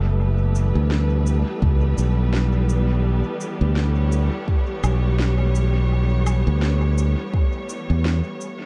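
At 84 BPM in 4/4 with a 16th-note swing, this hazy, spacious ambient dub excerpt rests on an Em chord. A growly, up-front fingered electric bass carries the low end until 8.2 s, while an electronic shaker, woody snare and woodblock soaked in studio reverb and dub echo enter at 0.6 s, joined by a deep, layered electronic kick at 1.6 s. Above them a lush, distant bowed string section holds sustained chords with vibrato, and a breathy, wind-like tuned noise texture drifts in the background, all within a dark production.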